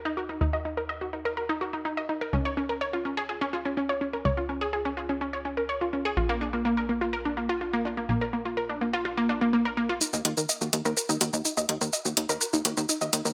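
Melodic techno with a dark, driving mood, cut from a longer piece, where a punchy, funky analog bass built from sawtooth and square waves plays under lush, detuned unison pluck arpeggios carrying subtle chorus and digital delay, until an electronic shaker and metallic hi-hats arrive up front at 10.0 s and a filter sweep on the pluck drives the build-up, all set in plate reverb with a bright 1980s-style digital sheen.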